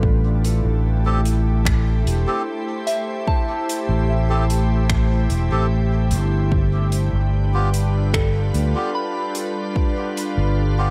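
A straight 74 BPM pulse in 4/4 carries this deep, meditative ambient dub excerpt in A minor. A growly, up-front fingered electric bass sits under an overdriven electronic kick and a big-room soft-mallet kit of finger snaps and hi-hat, while a pure, slow-attack organ-like pad with ensemble chorus holds sustained chords moving from Am7 to G7 at 6.5 seconds. A mellow FM bell with chorus and dub echo arpeggiates in the background, and reedy, nasal melodica stabs with dub echo enter at 1.1 seconds, all under light reverb.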